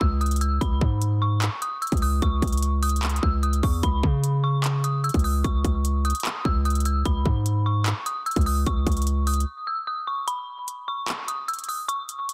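A dense, heavily limited modern mix with little reverb frames this melancholic, hard-hitting trap excerpt in C# minor, moving at 149 BPM with a half-time feel. An eerie, inharmonic FM synth bell carries the high melody through chorus, a low-pass filter and digital delay, while a punchy, sine-based 808-style bass with a noise layer sits up front beneath electronic drums built from a hard-clipped kick, crisp hi-hats and handclaps. The bass drops out at 9.4 seconds, and a break from 9.5 seconds leaves the bell and drums to carry the final stretch as the chords give way at 10.3 seconds.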